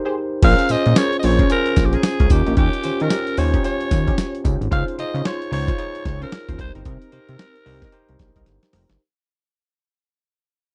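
A swung sixteenth-note groove at 112 BPM in 4/4 drives this punchy, bouncy new jack swing R&B passage, cut from a longer piece. After a brief break, a dusty sampler-style drum kit enters at 0.4 s, up front and compressed, with a gritty, thumpy kick, a medium-tuned snare, hi-hat, tambourine and crash cymbal, and it closes with a drum fill at 8.5 s. Alongside it, a fat, thick analog bass with a detuned sawtooth tone and a filter sweep sits prominently in the mix. A bell-like tine electric piano, clean and lightly tube-saturated, carries the accompaniment from the start, while a funky polysynth plays mellow, detuned stabs in the background through chorus, phaser and slapback echo. A breathy, raspy alto saxophone takes the solo melody with vibrato and scooped notes, its edgy pop tone touched with slapback echo. The chords move through Bbm7, Eb7, Dbmaj7 and Cm7, and the dry, close 1970s-style studio sound fades out across the passage.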